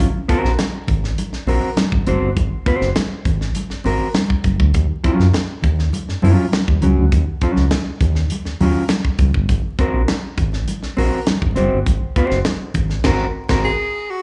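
Funk at 101 BPM in a straight 4/4, this sly, cool excerpt from a longer piece moves between Ab9 and Ebm9 chords. A mellow, clean electric guitar with slapback echo plays fingered accompaniment up front, over a round, deep analog bass that combines sawtooth and sine tones with a fast attack and sustained notes. A tight acoustic funk kit with a high-tuned snare, hi-hat, kick and crash sits mid-forward, joined by ringing, medium-tuned congas played with soft hands, also touched by slapback echo, until 12.9 seconds. A band accent arrives at 13.1 seconds, and at 13.6 seconds a tenor saxophone slips in with a soft attack, vibrato and scooped notes in a jazz style. The sound is that of a live gig heard through the venue's PA, with club reverb, vinyl crackle and a muffled top end.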